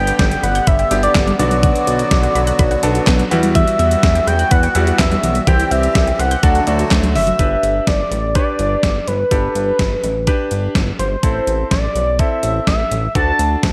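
Synth-pop in G major at 125 BPM, this bright, nostalgic fragment of a longer piece moves in a straight 4/4 through two sections, the second beginning at 7.4 seconds. A bold, retro octave-doubled lead carries the melody, its wave-folded sawtooth and sine tones given vibrato, chorus and a slapback echo. Up front, a clean 12-bit digital drum machine delivers a thumpy kick, medium-tuned snare, hi-hat and handclaps, overdriven and wrapped in gated reverb with the sound of a large room, while a glossy, nasal chorused synth bass with a filter sweep holds the low end. A brilliant, polished grand piano supplies accompaniment beneath them. In the background, a reedy, sweet accordion holds sustained chords and a soft, round pluck spins chorused arpeggios, both dropping out around 7.4 seconds as the chords turn from G, Bm, Em add9, C and D toward G, Am and D.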